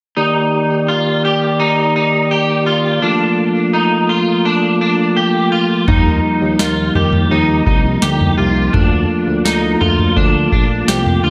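A wet concert-hall reverb and digital ambience give this blissful, ethereal dream pop excerpt a big arena sound, moving at 84 BPM in a straight 4/4 over Ebmaj7 and Bbmaj7 chords. From 0.2 seconds, a soft, flute-like tonewheel organ holds sustained chords through a fast rotary speaker, while a twangy electric guitar at the edge of break-up picks up-front arpeggios through ensemble chorus, digital delay and slapback echo. At 5.9 seconds a glossy, detuned synth bass with a filter pluck arrives alongside a booming analog drum machine, whose deep kick, crisp snare and toms carry a tape-warm character.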